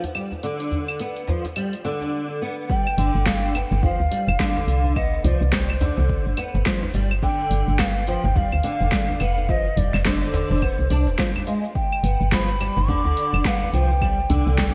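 Fingerpicked flamenco guitar arpeggios with fresh strings, touched with ensemble chorus and delay, open this earthy, meditative organic downtempo passage over a swung deep house kit of claves, hi-hat, shaker and a fat snare in gated reverb, while a soft-handed djembe sits close and dry in the background. At 2.7 seconds a breathy, mellow bamboo bansuri enters with vibrato and echoing delay alongside a punchy, layered electronic kick, and at 3.0 seconds a woody, round FM bass arrives up front, dark and decaying with sidechain pumping. The bright 1980s-style digital production wraps the parts in light small-room reverb, and the fragment is cut from a longer piece.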